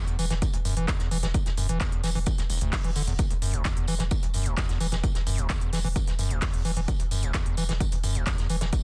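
A squelchy, gritty acid bass riff sits up front in this short cut of driving, hypnotic peak-time techno at 130 BPM, its resonant square-wave tone pumping against the beat with tape echo over a deep, saturated sine sub bass held on E1. A punchy electronic kick arrives at 0.4 seconds, layered with a techno kit of handclaps and smooth hats and a dry, mid-forward soul kit adding hi-hat, snare and tambourine with a rolled-off top. Sitting on an E5 chord in a dense, heavily limited mix with little reverb, the passage closes on a very quiet noise sweep at 8.8 seconds.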